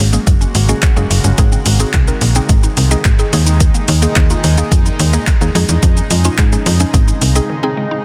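Dance-pop with a euphoric, carefree lift, this short passage rides a deep house drum kit of deep kick, metallic hats, handclaps and shaker, with a snappy, up-front FM bass that pumps with sidechain compression. A dark, woody synth pluck treated with chorus and phaser plays the accompaniment, a second, very quiet mallet-like pluck spins arpeggios, and a cloudy, evolving granular pad holds sustained chords through Gbadd9, Ab, Ebsus4 and Dbadd9. The bass and drums drop out by 7.5 seconds for a brief break, leaving the pad and plucks in a dense, heavily limited mix with light reverb.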